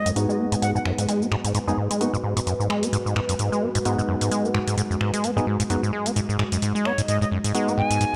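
A dry, gritty hardware recording with light studio reverb carries this hypnotic acid house excerpt at 130 BPM in G# minor, built on a squelchy, resonant sawtooth acid bass riff with overdrive and analog delay sitting up front, a booming analog drum machine with metallic hats, cabasa and finger snaps, hollow percussive organ stabs with subtle chorus and delay, and a deep, detuned dark pad with chorus holding a G#m7 chord, while a breathy, bright silver concert flute with vibrato and analog delay plays a short melody at the start and returns at 6.9 seconds.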